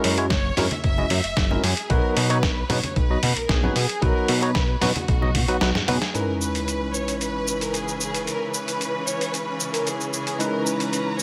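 Nu-disco at 113 BPM in C# dorian, cosmic and sensual, with a lush, expressive violin section carrying the melody through tape echo over a barky, bright tine electric piano that pumps against the beat and gets a filter sweep through the opening, while a fat, detuned analog bass with tube saturation, a gritty sampler-style kit of hi-hat, shaker and up-front snare, a thumpy electronic kick and ringing congas in the background drive the groove over F#7 and B. The kick drops out at 5.6 seconds as a drum fill leads into the second section, where the bass, kick and congas fall away and a biting, focused string section enters with pumping sustained chords on C#m7, marked by an electronic sub drop from 6.1 seconds and an impact at 6.2 seconds. Light reverb gives the parts a touch of space, and the passage is cut from a longer piece.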